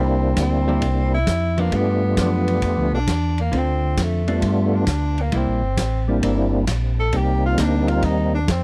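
A warm tenor saxophone solos with vibrato from a distant, roomy spot over a fat, lightly overdriven percussive organ with key click, slow rotary speaker and tape echo, a round, dark organ bass set up front, a dark hollow-body jazz guitar in the background and a small-room soul drum kit with dark cymbals and a tight kick, all swinging in a bluesy, soulful soul jazz organ trio excerpt recorded dry and close in a 1970s style.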